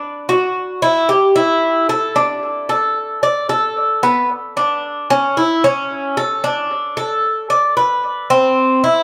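Latin music at 112 BPM in a straight 4/4, this short cut from a longer piece carries a warm, danceable mood. A Cuban tres plays alone for the full 9.0 seconds, picked on its acoustic double strings, some of them octave-doubled. Its tone is mellow yet metallic, sitting up front and ranging from B3 to D5, with an analog delay trailing its notes. The passage falls into two statements of the same section, the second starting at 4.3 seconds. A moderate studio reverb surrounds the playing, and the listener seems placed further back in the room.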